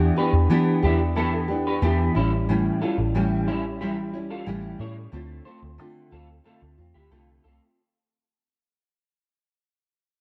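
Indie pop with a bedroom pop haze, this short cut from a longer piece moves at 91 BPM in a straight 4/4 and feels hazy and nostalgic. A fingerpicked nylon-string guitar carries the accompaniment up front, its dark, full-bodied classical tone softened by a subtle chorus and vibrato effect. Beside it, a vintage muted picked electric bass sits close in the mix, round and foam-muted with an amped edge. From 0.2 seconds, an electric guitar through a small old amp adds a quieter second line, slightly broken-up and picked, washed in ensemble chorus and analog delay. The harmony drifts from Em7 to A7 at 2.2 seconds and Dm7 at 5.1 seconds, while a moderate spring reverb and digital ambience give the dark, warm production a soft glow as the whole passage fades out.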